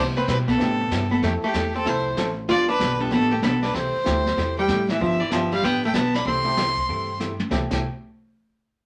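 A brisk swung 4/4 at 191 BPM drives this cheerful, down-home western swing excerpt in C major, built on a woody, thumpy pizzicato upright bass and a roomy, distant brush kit with a high-tuned snare and dark cymbals that enters at 0.3 s. Up front, a close, biting fiddle carries the melody with light vibrato and an airy bow, while a miked archtop guitar plays a clean, picked second line beneath it; a compressed hollow-body jazz guitar sits in the background, and a slightly detuned upright piano with short sustain joins at 0.6 s. The chords move through Cmaj9, Fmaj7, G7 and C6 in a moderate studio reverb, and a drum fill at 7.2 s leads into the final bars.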